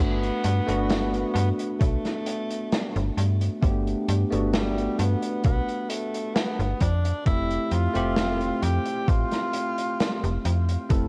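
Vaporwave at a slow 66 BPM in G major, this dreamy, nostalgic fragment of a longer piece pairs a clear tenor saxophone melody with vibrato and tape echo over a bell-like tine electric piano with subtle chorus, a snappy, metallic slap-like FM bass sitting up front, a crunchy, gritty breakbeat kit of hi-hat and snare with gated reverb from 0.2 seconds, and a thumpy overdriven electronic kick arriving at 1.8 seconds, all moving from Gmaj9 to Fmaj9 at 6.8 seconds within a cassette-tape sound and small room ambience.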